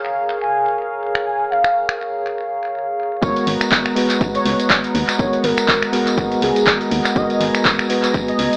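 Deep house with a moody, late-night feel, this short cut opens on a warbling, detuned analog pad pumping under a velvety, gliding synth lead, punchy drum-machine snaps, claps and hi-hat join at 1.2 seconds, and after a break the drop at 3.2 seconds brings in a bell-like tine electric piano, a hollow, dark organ-like FM bass, an electronic kick and a jingly background tambourine, with tape echo on the lead, drum machine, electric piano and tambourine, and the whole mix set in a filtered, AM-radio haze.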